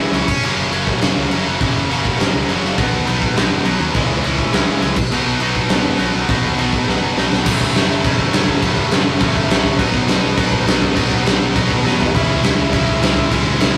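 At 205 BPM in a straight 4/4, this punk rock excerpt opens in half time for its first 7.5 seconds before the drums kick into full speed for the second section, giving the short cut an energetic, rowdy charge. A big acoustic rock kit sits up front with a fat snare, punchy kick, crash cymbal and toms, its sound roomy and mid-forward with a rolled-off top, and it throws in fills at 2.6 seconds, across the changeover at 6.9 to 7.5 seconds, and again at 11.8 seconds. A double-tracked, overdriven electric guitar drives the riff at the same level as the drums, bright and picked, moving through F#, B and C#m in the opening half and shifting to F#m, B and C#m after the switch. Underneath, a picked electric bass plays direct and growly, with a bright, punchy edge, a little lower in the mix. Light reverb and a rough rehearsal-room quality give the whole piece a loud, raw, live-in-the-room feel.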